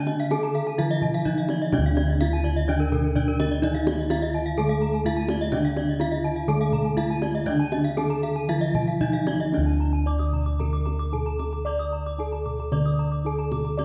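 A straight 4/4 pulse drifting between 113 and 127 BPM drives this shimmering, ceremonial Balinese gamelan fragment in D pelog, where a horn-mallet bronze metallophone carries the melody in a boxy, intimate tone, a wooden-mallet metallophone supplies low accompaniment until 9.5 s, two bright, airy metallophones ring out arpeggios with the beating shimmer of paired tuning, round bossed gongs sit up front as the bass, and a tight kendang keeps the percussion, all set in a moderate scoring-stage reverb.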